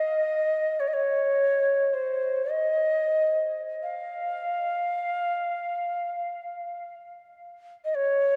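Bathed in a huge, dark reverb, this short cut of free-time world meditation music features a lone mellow, hollow cedar flute with an airy wooden timbre, playing straight, tongued notes between C5 and F5 through a diffuse ambient delay for its full 8.4 seconds, creating a spacious, meditative stillness.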